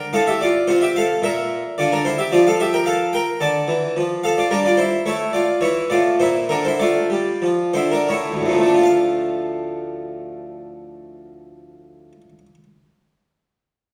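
In a rubato 3/4 moving between 80 and 111 BPM, this introspective, grave baroque-style suite movement in D minor is carried by a lone harpsichord, a brilliant Flemish-style instrument with three sets of strings, playing from 0.0 to 12.6 seconds across a range of D2 to A5. The harmony moves from F/A through D minor, G5, A5 and B-flat before settling back on D minor. The playing slows between 4.2 and 8.8 seconds, where a second section begins, all set in a wet recital-hall reverb heard from further back in the room in this excerpt from a longer piece.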